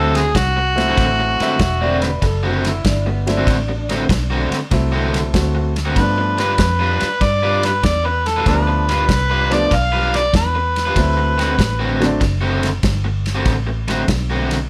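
A swung 96 BPM shuffle in 4/4 drives this rollicking, soulful electric blues excerpt in D mixolydian: a round, foam-muted bass, a small-room soul kit with tight kick, medium-tuned snare and dark ride, a bright overdriven semi-hollow guitar riff and an intimate grand piano with audible action noise back a gritty, up-front amplified harmonica full of tongue slaps and scooped notes, which pauses briefly and returns at 6.0 seconds over the move to G7, while a slightly broken-up, compressed second guitar with spring reverb adds a short line from 1.4 seconds.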